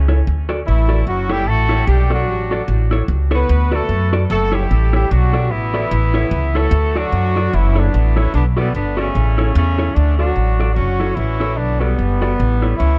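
A dark, warm production with light reverb frames this short, upbeat ska excerpt cut from a longer piece, its swung eighths giving the cheerful groove a loose bounce. A tight horn section carries the melody up front, its smooth top and octave doubling colored by tape echo and plate reverb. Beneath it, a woody, thumpy upright bass sits prominently in the mix, plucked on steel strings for the full 13 seconds. A clean, compressed electric guitar, played with the fingers, adds soft accompaniment a step back, also touched with plate reverb, from 0.1 to 12.7 seconds. The harmony cycles through D, F#m7, Bm7 and A throughout, with a brief second section arriving at 10.0 seconds on the same progression.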